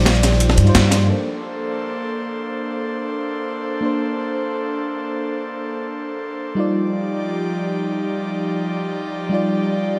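The rhythm moves in free time, with only a brief burst of groove at the very start of this liquid drum and bass fragment in Bb major. For the opening second, an up-front, gritty, sampler-style breakbeat kit of snare, hi-hat, shaker, ride and crash plays through low-pass filtering, layered with a darker, saturated second break kit in the background with a high-tuned snare and rolled-off cymbals. A woody pizzicato upright bass with steel strings sits up front beneath them, and a band accent lands at 0.7 s before the bass and drums fall away by 1.2 s. Throughout, in a dreamy, uplifting mood, a soft, round FM electric piano with a noise layer, chorus and tape echo carries the accompaniment through Ebmaj9 and Bbmaj9 chords. An airy, breathy, detuned pad with a slow attack and long release holds sustained chords up front from the start, its bright chorused tone floating alongside the keys until the close at 10.0 s. 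A lush hall reverb wraps the whole texture in a spacious studio ambience.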